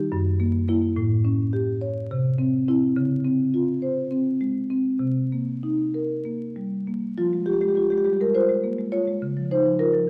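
In a rubato 7/8, this flowing, hypnotic contemporary classical fragment, cut from a longer piece, features a solo marimba played with soft mallets, its woody, round padauk bars sitting up front in a recital hall's reverb over vinyl crackle as the music shifts from its opening section into a new one at 7.2 seconds.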